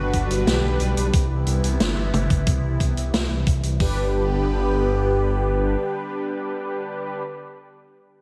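Set in a big arena-like space with scoring-stage reverb, this uplifting, nostalgic synthwave excerpt moves from G to Cmaj7 and back, as a thick, bold unison lead with slapback echo carries the melody over a swirling, sidechain-pumped phased analog pad, round synth brass stabs and a deep, rumbling detuned saw bass that carries a filter sweep and drops out at 5.8 seconds, while a thumpy 12-bit drum machine and a natural vintage kit with a medium-tuned snare drive the opening until about 4.0 seconds.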